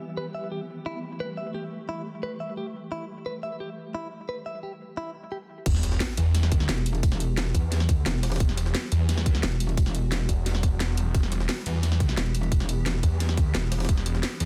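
A straight 4/4 pulse at 175 BPM drives this dark, mechanical excerpt of technical drum and bass in E minor, where a tense, swarming drone hums in the background throughout while a bright, clean direct-recorded electric guitar plays echoing, filtered arpeggios from 0.2 to 5.4 seconds before giving way at 5.7 seconds to a drop with a sub drop impact, an up-front tight electronic kick, a layered kit with a cracking snare and bright hats set in a small room, a gritty, pitched-up jungle sampler-style kit tucked behind, a snarling, detuned distorted saw bass, and, from 6.7 seconds, a metallic FM wobble bass with chorus, all in a dense, heavily limited modern master.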